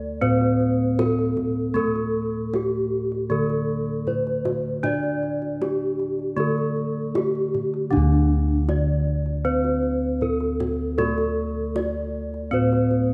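Ceremonial and serene, this short passage cut from a longer Javanese gamelan piece moves at a steady 78 BPM in 4/4 with a straight feel, set in D slendro. A bronze metallophone carries the melody from D4 to D5, struck with a wooden mallet; its tone is dark and smooth, and its paired tuning produces shimmering beats. Beneath it, a second bronze metallophone plays accompaniment from D3 to D4 with a horn mallet, sounding bright, full and close-miked, with a dry, up-front presence. Bossed gongs supply the bass across D2 to D5, their round, mellow tone coming from padded beaters and carrying a soft, beating quality. A kendang sits lower in the mix from 0.2 to 13.0 seconds, tight and band-limited with a vintage character, played with soft hands. The ensemble is framed by a moderate concert hall reverb with a 2.0-second decay.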